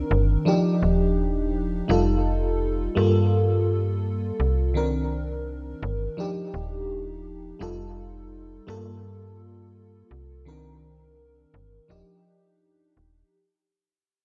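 Hazy and woozy, this vaporwave fragment drifts on a lightly swung groove, cut from a longer piece and fading out from its first moment to its close at 13.3 seconds. An FM electric piano layered with a soft pad carries the harmony, its lush, dreamy tone colored by a faint noise layer, a phaser, subtle chorus, tape echo and the grain of cassette tape. Beneath it, a slap-like FM bass sits up front with a snappy, metallic attack and a digital edge, each note decaying after it sounds. The chords cycle through Ebmaj9, F9, Gm9 and Cm9 twice before returning to Ebmaj9 at 11.9 seconds, giving the passage a gently looping, suspended quality. Light reverb and an echo-heavy mix, finished with its own cassette tape treatment, wrap the two parts in a soft, nostalgic blur.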